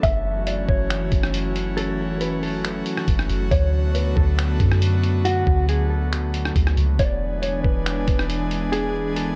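Atmospheric cloud-rap hip hop in F# minor, this short excerpt moves at 138 BPM in a half-time 4/4 feel, with an ethereal, melancholic mood that drifts through F#m7, D6 and E7 chords. A lo-fi sampler-style drum kit of finger snaps, hi-hat, rim click and a thumpy kick sits up front, its compressed, pitched-down sound muffled and coated in vintage 12-bit grit, as if re-recorded in a small room. Beneath it, a soft 808-style bass gives deep, round sine tones with a fast attack that decays into darkness. An airy, breathy pad holds sustained chords throughout, its detuned layers, noise and slow attack shimmering through chorus while sidechain pumping makes it breathe with the beat. A mellow, clean electric guitar carries the fingered melody between F#4 and E5, dark and compressed, washed in spring reverb, tape echo and a low-pass filter. Over the whole piece, worn cassette tape adds a warbling pitch drift, with little reverb in the room itself.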